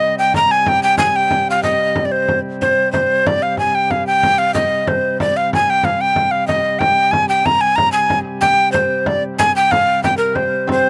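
This medieval dance in 6/8 moves at 124 beats per minute, counted in dotted quarters, with a straight feel in C minor and a mysterious, ancient mood. A breathy tenor recorder carries the melody up front, close-miked and woody, its tongued notes marked by chiff, vibrato and an unsteady edge, with a slapback echo on its sound. Beneath it a pipe organ holds a low drone on a nasal cornet solo stop with baroque voicing and tremulant, sitting well back in the mix. A frame drum played with soft hands enters at 0.3 seconds, close and acoustic. A concert harp appears only at 10.7 seconds with a single fingerpicked, ringing note as this excerpt from a longer piece cuts off. The sound is dry and open-air, with little reverb and nothing of an enclosing room.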